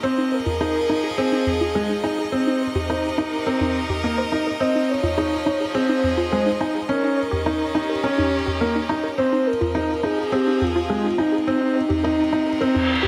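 A straight 4/4 pulse at 105 BPM drives this moving, melancholic piano and strings electronica in F minor, where a felt-muted upright piano plays an intimate riff with audible action noise and delay up front, a clear string quartet holds bowed chords with vibrato, a velvety chorused synth lead carries the melody, a warbly, dusty pluck traces filter-swept arpeggios in the background, layered electronic toms enter at 0.5 s, and a reverse cymbal appears at 12.7 s, inside a huge ambient reverb.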